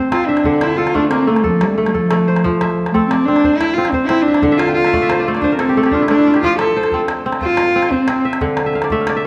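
A dark, woody bowed cello takes the solo in this joyful excerpt of West African string and xylophone music, its smooth-topped vibrato line sitting up front with a touch of tape echo. Crisp, ringing fingerpicked kora arpeggios run alongside it in 12/8 over chords that alternate between D minor and F, with kora fills at 4.5 and 8.7 seconds. A small, vintage-sounding calabash adds quiet, band-limited percussion, and a moderate recital-hall reverb surrounds the warm performance.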